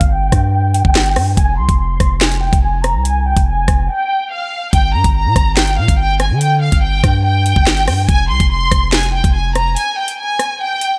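A lush bowed violin section leads this dark, menacing drill cut at 143 BPM in a half-time feel, its expressive vibrato and portamento passing through a low-pass filter sweep until 4.7 seconds over an Fm(add9) harmony. Beneath it, a deep, decaying sine-toned 808-style bass and an electronic drum kit with a knocking kick, sharp snare, metallic hi-hats, handclaps and rim clicks sit up front in a digital ambience. The groove breaks briefly around 3.9 seconds, and the bass drops out at 9.8 seconds as the strings and drums carry the final moments.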